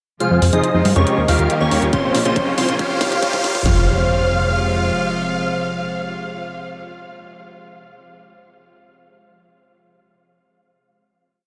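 Drenched in a vast, dreamy reverb, this short, complete uplifting trance piece in F minor moves at 139 BPM in a straight 4/4 with an emotional, soaring mood. A huge, detuned supersaw carries the melody as a repeating riff in full chords, bright and up front, pumping with the sidechain as a filter sweeps it through the build over Fm, Eb, Bbm and Cm. Around it, a punchy square-wave unison lead doubles that anthem an octave higher in the background, a velvety synth lead with chorus and vibrato adds its own riff, and a chamber string section with a reedy, gut-string tone holds bowed chords beneath. A very quiet, warbling vintage pluck runs a 16-step sequence, a funky analog bass rolls in sixteenths, and a tape-warm drum machine, re-recorded in a small room, supplies hats and crash, joined at 1.9 seconds by a layered four-on-the-floor kick for the drum fill. Riser and impact effects mark the transition, and at 3.7 seconds the build gives way to a final Fm chord held by the supersaw, leads and strings until 6.7 seconds.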